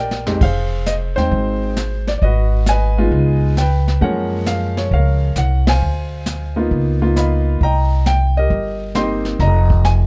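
A brushed swing at 134 BPM in 4/4 opens with a short drum fill as this relaxed jazz piano trio settles in, cut from a longer piece. A smooth, vintage concert grand carries the melody up front, moving through chords like Fm7, Gbmaj7 and Dm7b5, while a woody, thumpy upright bass with gut strings plays pizzicato beneath it, and a small-room brush kit with a boomy kick colours the time on snare, hi-hat, ride and crash. The band lands a shared accent at 5.6 seconds, all under light reverb in a dark production.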